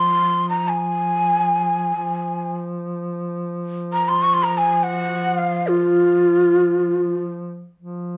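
A breathy, close-miked ney carries a soulful, melancholic Turkish makam melody with vibrato and crisp attacks, ranging from F4 up to Db6 and sitting up front over a dark, distant duduk drone on F3 with scooped notes, all set in a wet studio reverb heard from further back in the room, with the ney ending at 7.3 seconds and the duduk holding on until 8.2 seconds in this fragment cut from a longer piece.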